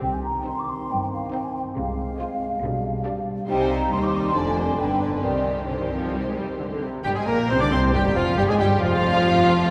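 Stormy and restless, this quick classical-period movement for symphony orchestra drives along at 137 BPM in 4/4 in C minor, a short passage cut from a longer piece. A large flute ensemble with an airy, hollow tone carries a second line from the very start, over sustained chords from a mellow French horn section and a bowed bass of cello and double bass sections. At 0.4 seconds the violins enter with a focused, vibrato-laden melody, joined by a second violin line and a smooth, even viola accompaniment set in the background. The harmony moves from C minor through F minor and a G7 back home before settling on a bare C5 at 7.1 seconds. Just before that, at 7.0 seconds, a bright, soft-attacked clarinet and a clear oboe add second lines, and with the C5 a warm bassoon takes up accompaniment. The whole is bathed in a wet cathedral reverb with a long 4.7-second tail, lending the lush strings a grand, church-like space.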